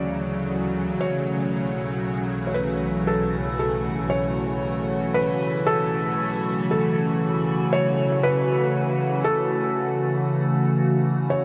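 A serene, reflective ambient excerpt at 58 BPM opens on Dmaj7 with a morphing wavetable pad held up front in chorus and phaser, a soft, muted felt upright piano fading in with a delayed melody and audible action noise, a tense, string-like sawtooth drone in the background, and a dark, bowed chamber double bass section played sul tasto that fades out and stops at 9.2 s, the whole mix set in a huge, dark reverb.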